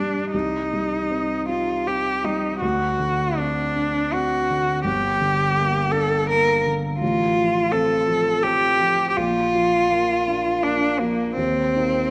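Romantic classical duo in an elegiac, yearning mood, cut from a longer piece, with a rich, bowed single cello singing the melody up front with smooth, even vibrato over a dark, mellow baby grand piano, also up front, whose long sustain carries the accompaniment, set in 3/4 with uneven, rubato beats and a moderate concert hall reverb.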